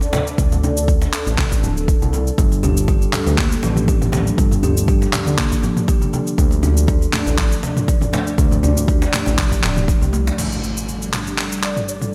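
Afro house at 120 BPM with a light sixteenth-note swing, this hypnotic, warm excerpt rides on an up-front deep electronic kick, an overdriven, layered deep house kit with cabasa, crash, handclaps and toms, and hard-hand acoustic percussion from a deep djembe in the background and very quiet bright congas, all under a dark, detuned analog pad with chorus and sidechain pumping. A smooth, saturated sawtooth-and-square synth bass with vibrato pumps beneath, while from 2.4 seconds a woody, hollow-box kalimba rings out arpeggios through delay. At 10.4 seconds most of the groove drops away, leaving the drum kit and pad beside an electronic impact, and a smooth, expressive synth lead with lush chorus holds a single high note at the close, all set in a moderate lush hall with bright 1980s-style digital sheen.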